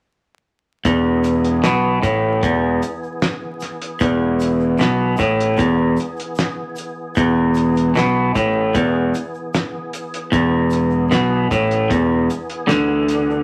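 A cloth-damped, thuddy drum kit with a fat snare and tight kick enters at 0.8 s alongside a grainy tube shaker in the background, and a moment later an up-front, twangy clean guitar riff, an overdriven fuzz bass and a percussive tonewheel organ holding sustained chords through slow rotary speaker and chorus vibrato join in, giving this hazy, trippy 76 BPM psychedelic rock fragment in E mixolydian a vinyl-crackled, lightly reverberant sheen.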